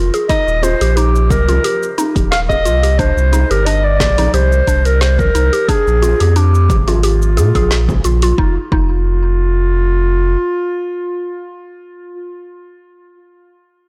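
A mallet-like synth pluck and a sub bass open this earthy, meditative slice of organic downtempo at 89 BPM in 4/4, the sixteenths carrying a light swing. The pluck's woody, vintage FM tone warbles through chorus and tape echo as it spins arpeggios, while the round, sine-like sub bass sits up front, deep and sustained, pumping against the sidechain. A mellow clarinet enters at 0.3 seconds with a distant, roomy, classical-style solo line touched by tape echo. Around it come a layered electronic kick, a deep house kit with a woody snare and dark hats, and bright bongos and congas set back in a large room. The harmony moves from Eb69 through Cm9 to Bb, then settles on Ebsus2/F as the drums thin out after 8.4 seconds, with the bass and clarinet lingering and the clarinet last to stop at 11.8 seconds. Light reverb surrounds the mix, and the whole recording sounds blown-out and overdriven.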